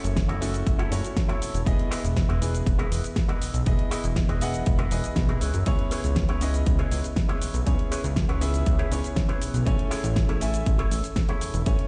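Sensual and cosmic, this nu-disco excerpt moves at 120 BPM in a straight 4/4, cycling through F#m7, Emaj7, C#m7 and Amaj7 chords. A fat, detuned sawtooth bass with an evolving filter sweep sits up front beside a punchy electronic kick that enters at 0.2 seconds, while a pop kit adds a fat snare, metallic hats and shaker. A clear grand piano with digital delay carries the accompaniment, and a bright, twangy envelope-filtered electric guitar picks a clean riff through subtle chorus and delay. Everything is heard as if played on a big sound system in a bare room with stone room reverb, and nothing sounds above 10.3 kHz.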